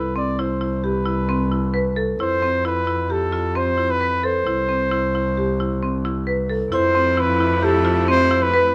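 A restless, playful stretch of contemporary chamber music in a straight 5/4 at 132 BPM, where a mellow, up-front solo trumpet carries the melody over woody, percussive hard-mallet marimba arpeggios and a rich, intimate bowed double bass played sul tasto, until at 6.7 seconds a very quiet, ringing vibraphone with slow motor vibrato adds a second line and a clear, focused studio string section slips in behind with sustained chords, all moving through Cmaj7, Fmaj7 and C in light reverb.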